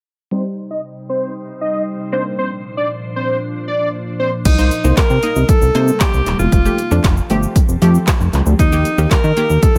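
A straight 4/4 pulse at 116 BPM drives this energetic dance-pop excerpt, though the deep house drum kit, with its punchy kick, woody snare, dark hats, handclaps, shaker and crash, only arrives at 4.5 s alongside an up-front chorused synth bass of detuned sawtooth and pulse-wave tones. Before that, a thick, bold unison lead with delay carries the melody, while detuned sawtooth chord stabs and a glassy, ethereal FM pad with slow attack sit under a filter sweep, all three pumping against the sidechain over Cm and Bbadd9. From 4.5 s a clear alto saxophone with light vibrato plays the tune over Cm7, Fadd9 and Eb in C dorian, in a dry mix.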